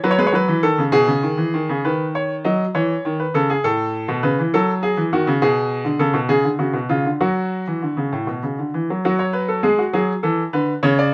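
A steady 6/8 pulse carries this lively yet stately fragment of a baroque-style two-part invention, played solo on a bright, up-front baby grand piano whose brilliant tone sits close and detailed in a light reverb.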